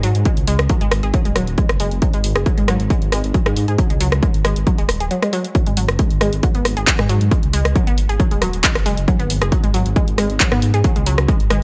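An overdriven, up-front electronic kick hits heavy from 0.3 s, driving this industrial, relentless peak-time techno excerpt in a straight 4/4 beside a punchy, dry analog drum machine of handclaps, rim clicks and overdriven hi-hats that pump with sidechain. Underneath, a dark detuned saw bass rumbles deep with beating, sustained tones that also pump, while a quieter unison pluck riff adds a lush, warbling, vintage edge through phaser and tape echo, pumping as well. The whole cut stays relentless, set in a digital ambience.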